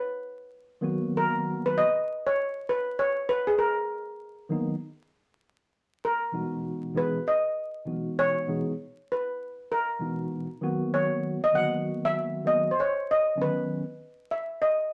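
A dark, shimmering double seconds steel pan, struck with hard rubber sticks, carries the melody up front from the very start of this warm yet cool hip hop excerpt, its metallic tone kept smooth. At 0.8 seconds a mellow, clean tine electric piano heard through its built-in speakers joins close in the mix, comping on Bmaj7 before moving to Emaj9/B at 6.0 seconds and back again over a swung 16th-note groove in 4/4. A wet studio reverb and a bed of vinyl crackle lend the short passage a dusty, lived-in feel.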